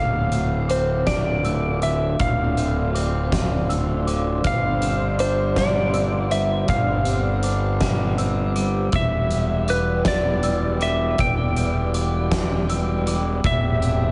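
A dark, slide-played lap steel carries the melody through slapback and tape echo from the start, over compressed, picked clean electric guitar arpeggios, mellow bell-like glockenspiel struck with rubber mallets, and a punchy fuzz-overdriven bass up front. A huge arena drum kit with a fat snare and punchy kick arrives at 0.3 seconds, and a thick, detuned sawtooth pad with chorus and tremolo swells in behind at 1.7 seconds. This cathartic, cinematic post-rock passage in a straight 6/8 moves from Dm7 through G7sus4 and Em7 to Am7/E inside a moderate scoring-stage reverb, with an arena-sized sound.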